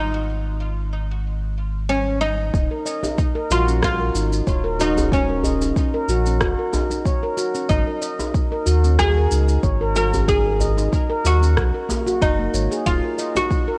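A worn, warbling cassette sound with light small-room reverb wraps this meditative, hypnotic organic downtempo excerpt in Eb minor at 93 BPM, where a bright, woody, plectrum-plucked oud with delay carries the melody over a round sine sub bass from the start. At 2.5 seconds a ringing nitrided-steel handpan joins with digital-delayed arpeggios, along with a deep, tape-warm electronic kick and a layered shaker and rim click, while a tight, cracking djembe with metal rattles enters at 3.0 seconds. The harmony moves from Ebm9 to an Ab7 with its third omitted before settling on Ebmadd9, all under a gentle 16th-note swing.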